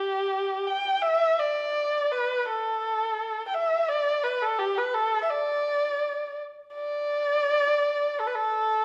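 This pastoral yet festive Chinese traditional fragment in D zhi mode moves at a rubato 83 BPM in 2/4, carried entirely by a single up-front erhu whose dark, woody bowed tone, rich with vibrato and portamento, spans G4 to G5 in a moderate recital-hall reverberation before shifting into a new section at 6.8 seconds.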